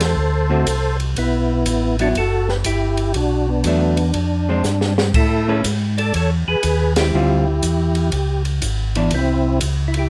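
Closely miked and detailed with light reverb, this bluesy, swinging soul jazz organ trio moves at 121 BPM in 4/4 with a 67% swing on the eighths. A gritty, overdriven tonewheel organ with third-harmonic percussion and chorus vibrato through a stopped rotary speaker carries the melody up front, while a second, round and dark tonewheel organ plays the bass with chorus vibrato and a slow rotary speaker. An open acoustic drum kit with a high-tuned snare and boomy kick fills at 4.6 seconds, a clean, picked hollow-body electric guitar adds accompaniment, and the band hits an accent at 6.9 seconds over changes running from D7 and Gmaj13 through Fm69 to a final C.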